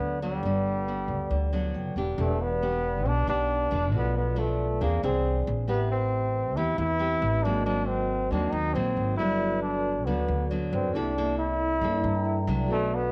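A straight 4/4 bossa nova pulse at 137 BPM carries this breezy, sunny excerpt in E minor, tuned slightly low to A4 = 435 Hz, lasting about 13 seconds as part of a longer piece. A bright, punchy trombone takes the jazz-style solo melody up front, forceful and played with vibrato, yet with a roomy, distant quality. Beneath it, a fingerpicked nylon-string guitar in classical style supplies warm accompaniment, while a pizzicato upright bass with steel strings sits up front with a woody, dark tone. In the background, a vibraphone played with medium mallets adds metallic, ringing color with slow motor vibrato, along with short fills at 1.5 and 11.8 seconds. The harmony moves through rich jazz chords such as Gmaj7, Bm7b5, Eaug7, Am9, G#9 and C13, all under light reverb.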